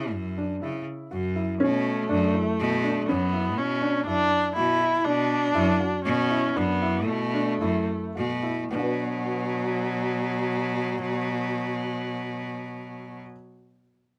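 Contemporary chamber music in an uneven 7/4 with a hypnotic, restless mood, where a muted upright piano's mellow, intimate arpeggios with audible action noise sit over a bright, intense bowed cello bass, joined at 1.6 seconds by a nasal, expressive viola line with portamento, all in light reverb as the pulse slows between 4.6 and 8.7 seconds in this excerpt cut from a longer piece.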